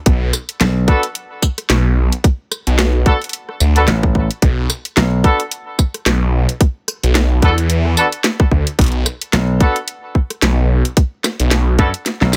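A swung 16th-note groove at 110 BPM in 4/4 drives this playful, funky glitch hop excerpt in B minor pentatonic, sitting on a B minor chord. A tight, overdriven electronic kick and a layered, overdriven drum kit with a cracking snare, bright hi-hats, rim clicks and tambourine sit up front. A thick, detuned sawtooth bass with a phaser and saturated overdrive churns underneath. A punchy, amped slap bass adds funk until 5.2 seconds, then returns at 9.3 seconds. A vintage-sounding, bright horn section fires pop-style stabs that pump against the sidechain and trail off in delay, all in a dry, close mix. Near the end, the kick drops out at 12.1 seconds for a closing drum fill.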